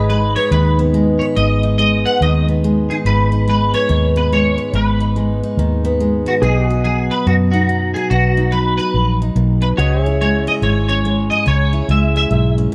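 A swung 4/4 feel at 142 BPM drives this down-home, nostalgic honky-tonk and classic country piece in B major, where a twangy, scooped clean electric guitar carries the melody through an ensemble chorus over a bright, full-bodied picked dreadnought acoustic with audible finger squeak, a dark, round, punchy foam-muted vintage fingered bass, and quieter compressed slide chords from a pedal steel played with fingerpicks and volume swells, all captured dry and close with detailed microphones that put the two guitars and bass up front.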